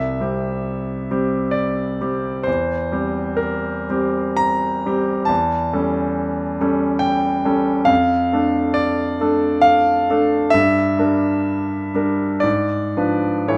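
A bright, up-front concert grand piano plays alone from 0.0 s in this melancholic, wistful Romantic nocturne excerpt in 3/4 at a rubato 51-71 BPM, its deep bass and long sustain ringing in a moderate large-studio reverb as the harmony drifts from C through A7/E into D minor at 5.3 s and on to a closing G#dim7 at 12.4 s.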